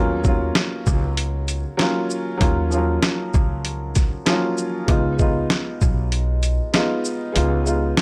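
This tough, dark boom-bap hip-hop excerpt features a compressed, pitched-down sampler-style drum kit, with a thumpy kick, a medium-tuned snare, hi-hat and shaker riding a swung sixteenth feel, and the kick dropping out from 7.4 seconds. Alongside it, a growly, woody upright bass is played pizzicato, while a dark, intimate baby grand piano with audible action noise, short sustain and a boxy, worn character comps through Ebm9 and then Db7, filtered and tinted by cassette tape. The dry, gritty sound keeps all three parts up front.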